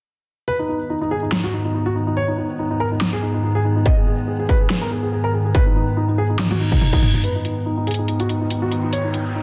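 A distorted electronic kick drum, layered and pushed up front, hits hardest in this heavy wobble dubstep excerpt, entering at 3.9 s and stopping at 7.0 s. The piece sits in G# minor at 142 BPM, with a swung, half-time feel in 4/4 over a G#m chord, and its mood is aggressive and menacing. A dark, worn grand piano carries the melody with audible action noise, muffled by a low-pass filter and trailed by digital delay. Beneath it, an evolving wavetable pad holds detuned, morphing chords with a slow attack, chorus and sidechain pumping. The dubstep drum kit brings a huge snare, bright hats and toms with a tape-warm character. A drum fill and reverse cymbal lead into a closing build-up, where a riser and a filter sweep on the piano carry on to the end, all within a moderate plate reverb and a dense, heavily limited modern master.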